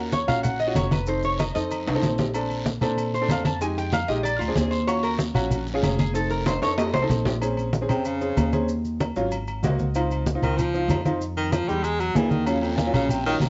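A bright, slightly detuned upright piano, woody pizzicato upright bass and a lap resonator guitar played with a steel bar open this sultry, sophisticated Afro-Cuban jazz excerpt in Bb minor at 189 BPM, the guitar's nasal, metallic slide melody up front over low-tuned, damped congas, ringing timbales and agogo bells, a raspy guiro and grainy maracas in the background. The guitar falls silent at 7.0 s, and from 7.9 s a breathy baritone saxophone carries the solo, its subtone full of scooped notes and light vibrato, while the piano adds a short fill around 9.5 s. The home cassette recording gives the whole a muffled, band-limited sound in a moderate studio reverb, with drum fills around 2 s and just before 7.4 s.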